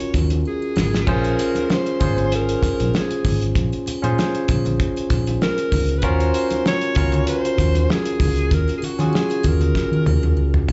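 A lightly swung sixteenth-note groove in 4/4 carries this cinematic, bittersweet cut of lush 1970s-style soul, with a cloth-damped, thuddy drum kit up front and drum fills at 0.5 and 9.8 seconds, a round, foam-muted vintage electric bass, soft-handed ringing congas and a shimmering triangle tucked in the background. Over it a barky tine electric piano, lightly overdriven with slapback echo, comps through Ebm7 and Bbm7 while a mellow alto saxophone sings the melody with jazz vibrato. The whole excerpt sounds like a live gig heard through a club's PA, bathed in room reverb with a dulled, rolled-off top.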